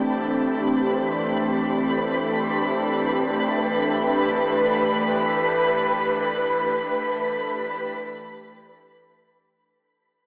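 In free time and tuned to A4 = 442 Hz, this warm, weightless ambient excerpt pairs an airy, breathy pad of detuned sawtooth and a noise layer, up front with chorus and phaser, against a deep, round sine sub bass held very quiet on G1 and a twinkling, sparkling granular FM texture with an octave-up shimmer that fades in across the whole span, all bathed in a long shimmer reverb and an AM radio tone as the harmony moves from Gsus24 to Em/G at 3.4 seconds before a fade-out from 5.5 seconds.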